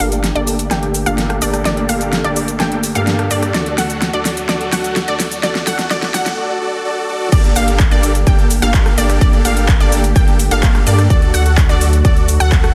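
This anthemic, emotional festival progressive house excerpt in G minor at 127 BPM opens on a build-up over Gmadd9 and D chords. A detuned supersaw riff passes through a filter sweep and digital delay, and a bright unison pluck spins delayed arpeggios high above. A lush, slow-attack pad holds chords in the background, and a thick, saturated sine sub bass sits below. An overdriven dance kit with a huge snare, metallic hats, claps, rim clicks, shaker and crash plays a fill until 6.4 seconds over a very quiet riser. The pad, pluck, riff and bass all pump to the sidechain throughout, and a punchy, up-front overdriven kick lands the drop at 7.3 seconds in a dense, heavily limited master with light reverb.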